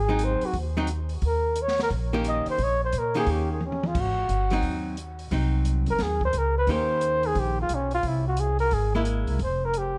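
A moderate studio reverb gives this relaxed, playful excerpt of small-group swing and bop a natural room, with the mellow flugelhorn up front, singing the melody with light vibrato and scooped notes through plate reverb and tape echo at a brisk 176 BPM swing. Beneath it, the woody pizzicato upright bass and the dark, clean, compressed hollow-body archtop guitar with plate reverb carry the harmony through a run of dominant chords that ends on a bare F5. The open jazz drum kit, with its high-tuned snare and boomy kick roughened by 12-bit sampler grit, sits further back and breaks into a fill at 3.6 seconds.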